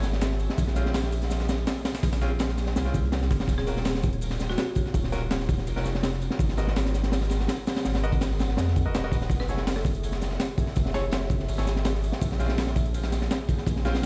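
Dark and raw, this 165 BPM drum and bass and jungle cut in Eb minor rides a crunchy, punchy breakbeat kit up front with a gritty, high-pass-filtered sampler-style break tucked behind, while a thick, saturated sub bass anchors minor ninth chords, a bright grand piano with audible action noise fires dub-echoed stabs, and a buzzing, woody marimba slips in at 3.6 and 9.4 seconds, all set in a big bare-room reverb with vinyl crackle.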